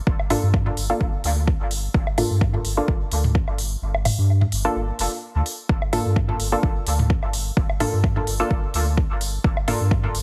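Hazy and deep, this short cut from a longer dub techno piece moves at 128 BPM in 4/4 with a light swing on the sixteenths, sitting in G minor over a Gm9 chord. An up-front electronic kick anchors the groove from the start, with a pure sine sub bass underneath, clean and dark, ranging from F1 to G2 and pumping through sidechain compression. A filtered dub chord stab built from detuned sawtooth tones plucks short, mellow, evolving chords between Bb3 and A4, colored by chorus and phaser and trailing off into dub echo. Electronic woodblock and toms add a tape-tinged analog texture with their own echo and pumping, while smooth electronic hi-hats fill the top, with the drums and percussion set in a small room reverb. The kick drops out from 3.8 to 5.7 seconds, leaving the bass, stabs, hi-hats and percussion to carry the groove, all within a heavily compressed, radio-like sound.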